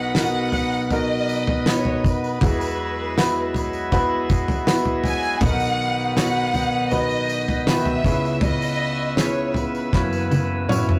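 A straight 4/4 pulse at 80 BPM from a damped, fat-snared 70s drum kit carries this heartfelt B major pop ballad excerpt, where a lush, expressive violin section sings the melody with vibrato and portamento over clear, deep-bassed grand piano, a shouting, lightly overdriven tonewheel organ with key click and slow rotary speaker, and a jingly tambourine in the background, moving through Bmaj7, Eadd9 and C#m7 before a drum fill at 9.9 s plays over F#7sus4, all in a rough rehearsal-room sound with saturation.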